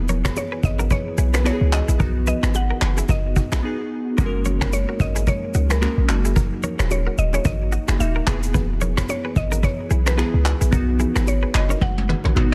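Opening on glassy, chorused digital keys, a very quiet ethereal pad and a deep, boomy 808-style bass over chords moving from E through B, F#add9 and D#m, this sunny, breezy afrobeats track at 110 BPM with a swung 16th-note feel soon adds a twangy, direct-recorded clean electric guitar riff with digital delay, a brush drum kit of finger snaps, handclaps, tight kick, rim click, shaker and toms with soft clipping on kick and snare, bright congas and bongos in the background, and a woody, round FM synth pluck melody with chorus and delay from 0.4 s. The drums briefly drop out at 3.6 s and return at 4.2 s, with a fill arriving at 11.8 s, all in a dense, dry, heavily limited master.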